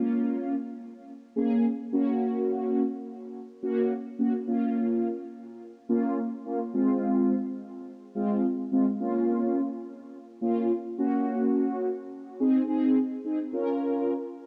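Pop in Bb minor at 106 BPM in a straight 4/4, this short fragment of a longer piece has a nocturnal yet driving mood. A single mellow synth brass carries the whole passage alone from 0.0 to 14.1 s, staying up front between Ab3 and Bb4. Its tone is brassy, round and full-bodied, built on a detuned sawtooth with a dark cast, a filter sweep and a moving notch, fast attacks and sustained notes, thickened by chorus and trailed by analog delay. The chords move from Bbm through Gb, Fm and Ab before settling back on Bbm at 13.5 s. A wet echo chamber reverb with a 1.8-second tail surrounds the sound, and the worn, warbling character of old cassette tape adds a drifting pitch to the recording.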